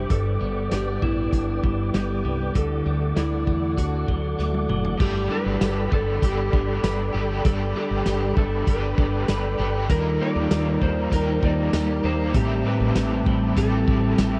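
A floating, blissful dream pop excerpt opens with a dark, fingerpicked slide guitar melody through tape echo over flute-like tonewheel organ chords turned by chorus vibrato and a fast rotary speaker, compressed clean guitar arpeggios with analog chorus, a round, woody fretless bass and a muffled, lo-fi vintage drum kit with tambourine, and after a drum fill a double-tracked overdriven guitar with tremolo enters at 5.0 seconds, joined by a very quiet, ringing hard-mallet vibraphone, in a dreamy mix drenched in huge ambient reverb.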